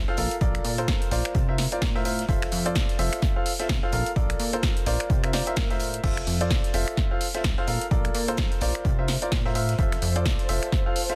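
A clear, up-front grand piano carries the riff through this uplifting, joyful piano house cut at 128 BPM in F major, its chords cycling through Bbmaj7, C9sus4 and Fmaj7 with dub echo and sidechain pumping, set against a plucky, funky analog bass that also pumps. The beat swings on the 16ths, built from a punchy, tape-warm electronic kick, an analog drum machine with crash, finger snaps, hi-hat and snare, and a very quiet acoustic jazz kit with a high-tuned snare, all in a small room ambience. At 9.2 seconds an ethereal, airy pad enters very quietly with warbling, detuned chorus, and the whole piece is a dense, heavily limited modern master that sounds cut from a longer track.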